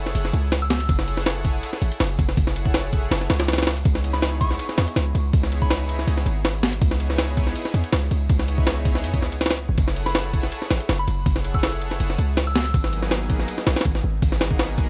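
A dry, gritty hardware recording laced with vinyl crackle opens this raw, nostalgic drum and bass cut, a short slice taken from a longer jungle piece at 162 BPM in C# minor. Up front, a sampler-style jungle kit, compressed, pitched up and tape-warm, drives a straight 4/4 with a thumpy kick, a high-tuned snare and ride cymbal, all set in a touch of studio reverb. Beneath it, a deep, boomy 808-style bass built on a sine with a noise layer punches in with a fast attack and decays, running through the whole 14.9 seconds. A lush, thick sawtooth pad of detuned unison voices warbles with chorus, holding bright, slow-blooming chords that move from F#m7 to C#m7, back to F#m7, and on to G#m7 at 12.7 seconds. In the background, a soft, pure FM bell floats brief, mellow phrases high in its register, first at 0.6 seconds, coloured by chorus, vintage 12-bit sampler grit and dub echo.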